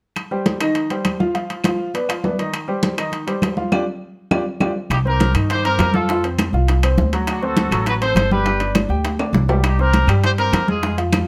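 A tight trumpet section with vibrato carries the melody up front from 4.9 seconds in this driving, danceable salsa excerpt at 203 BPM in C minor, joined then by a dark, thumpy pizzicato upright bass on gut strings and round, low-tuned bongos, while a clear, present grand piano plays accompaniment throughout over thick-skinned congas, ringing metal-shell timbales and woody background claves, with a band accent and drum fill leading into the second section and light reverb on close, detailed microphones.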